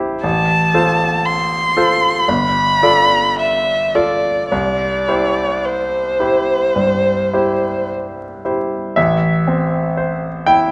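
Romantic classical duo in a serene mood at a slow, rubato 52-60 BPM in C major, cut from a longer piece: an expressive, smooth-topped solo violin carries the melody up front with vibrato and portamento from 0.2 to 7.9 seconds over a bright, polished, brilliant grand piano accompaniment with short sustain that continues alone until 10.7 seconds, moving through F/A, G9 and C before settling on Am, all bathed in a wet recital hall reverb with a bed of vinyl crackle.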